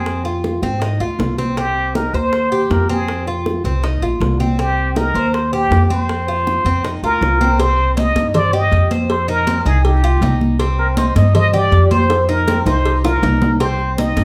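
A live band shares one room, wrapped in a wet studio reverb, in this danceable, sultry Cuban son and guajira passage cut from a longer piece, moving at 160 BPM in 4/4 with a straight feel in C minor. Up front, a trumpet with a plunger mute carries the solo melody in a vintage jazz style, its clear, wah-wah tone marked by scooped notes. Beside it, the upright bass sits prominently, plucked with a dark, growly, woody thump from its steel strings. The Cuban tres plays mellow, metallic arpeggios on its picked double strings, some doubled at the octave, while close, tight bongos and cowbell are struck with hard hands and high-tuned, damped congas with a thick skin sit in the background. The harmony circles around Fm7, Cm and F5, a second section begins at 7.6 s, and a drum fill arrives at 12.1 s before the chords settle back on Cm.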